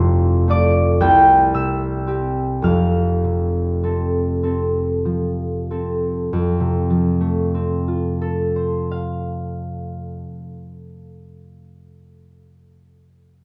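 Close, detailed microphones place a mellow concert harp up front in a moderate scoring-stage reverb, its thumb-plucked notes ringing across a range from F1 to G6. This serene, peaceful classical piece, cut from a longer work, unfolds in 6/8 with free rubato, easing to a slower pace over the first 6.3 seconds before a new section begins. The solo harp moves through a simple harmony of F, C and back to F, and its acoustic sound lingers peacefully in the space.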